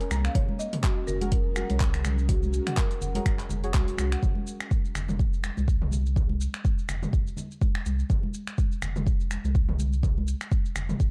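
An up-front electronic kick drives this swung, earthy, spiritual afro house excerpt, layered with a tape-toned deep house kit of finger snaps, handclaps, hi-hat, shaker and toms, small-room acoustic congas and a round sine sub bass pumping underneath. Over the opening drop, a woody soft-mallet marimba plays delayed arpeggios, a buzzing, dry hardwood marimba carries a quiet melody in the background, a dark wave-folded chord stab adds chorus, phaser and delay, and an ethereal, detuned pad with gritty sampler texture sustains chords through its reverb. At 4.2 s the pad, stab and soft-mallet marimba drop away, leaving the drums, congas and bass to carry the dark, close-sounding groove until the cut at 11.1 s.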